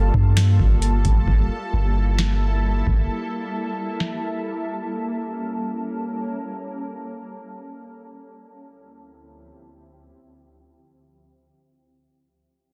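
A shimmering, detuned pad with chorus and its own reverb opens this hazy, spacious cloud-rap fragment, joined at once by a round, sine-like 808 bass that sits up front until 3.1 seconds. A booming, tape-warm analog drum machine with a deep kick, crisp snare and metallic hats enters at 0.1 seconds and drops out after 4.1 seconds, leaving the ethereal, granular pad to drift through Gm9, A7b9 and Dm11. A filter sweep and fade-out run across the whole passage in a dense, heavily limited, dry mix.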